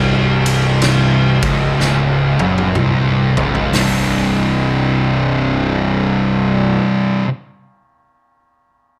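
A slow, heavy 62 BPM groove in 4/4 with a swung eighth-note feel drives this brooding, sludgy stoner and doom metal excerpt, tuned slightly flat of standard pitch. A double-tracked fuzz guitar sits up front with a warm, distorted, picked riff in its low register, moving from an F#5/B# chord to C5 when the music shifts at 3.7 s. Beneath it, a fingered electric bass adds growly, overdriven fuzz, bright and punchy in tone with a direct, amped edge. An oversized, low-tuned acoustic kit enters at 0.5 s, sounding distant and roomy, with a boomy kick, fat snare, dark cymbals, toms, hi-hat and ride, all carrying a gritty, saturated character. A drum fill leads into the change of chord, and the drums stop at 4.0 s, leaving guitar and bass to ring on in a light reverb and studio ambience.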